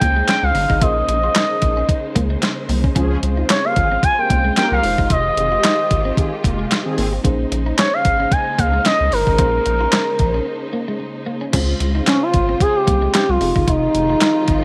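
Light reverb gives this slick, funky early-eighties boogie funk excerpt a polished studio sheen, set at 112 BPM in Bb dorian with a 16th-note swing. Up front, a smooth, mellow sawtooth lead carries the melody with portamento, vibrato and a soft attack, thickened by chorus and a slapback echo. A rubbery, hollow square-wave bass bounces along beside a crisp, overdriven 8-bit drum machine with a thumpy kick, medium-tuned snare, hi-hat, handclaps and crash, which sounds re-recorded in a small room. Behind them, a lush, dreamy FM electric piano with a soft pad layer warbles through chorus, a clean picked electric guitar plays a riff with analog chorus, and a studio string section holds bowed chords with expressive vibrato. A dark, round synth brass line with chorus adds a second voice from 3.0 to 7.1 seconds, and a brief break arrives at 10.5 seconds before the groove resumes over chords moving between Bbm11, Dbmaj7 and Fm9.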